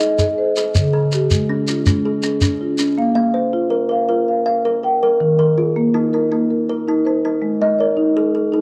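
Southern African traditional music in an mbira-style interlocking cycle, this hypnotic, rippling fragment moves at 108 BPM in a straight 12/8, cut from a longer piece and centred on Bb in an equiheptatonic tuning. A kalimba and a soft-mallet marimba both play arpeggios throughout the 8.6 seconds, up front and coloured by cassette tape. The kalimba has a hollow, ringing, thumb-plucked tone with a vintage, band-limited character, while the marimba's padauk bars sound round and mellow. A grainy shekere adds percussion only until 3.0 s, where the music shifts into a second section. The harmony moves from Ab and Db to Bb5 and Eb5 before returning to Ab, all set in light reverb and small room ambience with the intimate feel of a home cassette recording.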